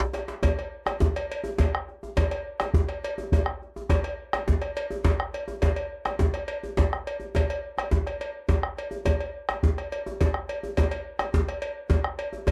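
The rhythm moves in 12/8 at 140 beats per minute, counted in dotted quarters, with a straight feel that gives this fragment of a longer West African traditional drum piece a driving, festive energy. It opens on a short drum fill lasting until 0.4 seconds, after which a single section runs to the cut at 12.5 seconds. The bombo sounds round and sits up front as the strongest voice in the ensemble. The djembe, also up front, is tight and cracking, with metal rattles buzzing around its strokes and a softness in the hands. A metallic cowbell rings lower in the balance, carrying a live-room air that it shares with the djembe. The overall sound is dry and close, like a 1970s studio recording.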